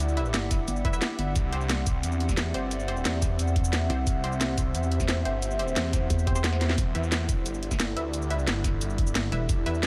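A straight 4/4 groove at 177 BPM drives this dark, technical drum and bass excerpt, with an up-front kit of cracking snare, bright hi-hats and cabasa running throughout and a knocking electronic kick joining at 0.5 seconds, both re-recorded in a small room. Underneath, a thick, swirling detuned saw bass with phaser and overdrive holds the low end from E1 to E2 with sidechain pumping, while a heavy, pulsing pluck wobble bass cuts in with distorted, compressed bursts, first at 0.7 seconds. A deep, moody analog pad sustains chords with chorus, phaser and sidechain pumping, and a muted, filtered dub chord stab sits in the background with chorus and a diffuse ambient delay. Behind them, a warbling, nostalgic lo-fi pad adds a hazy tape-like texture with its own reverb. The harmony moves from Em7 to C and back to Em7 at 6.8 seconds, just after a drum fill at 6.6 seconds, leaving a tense, futuristic mood in a lightly reverberant space.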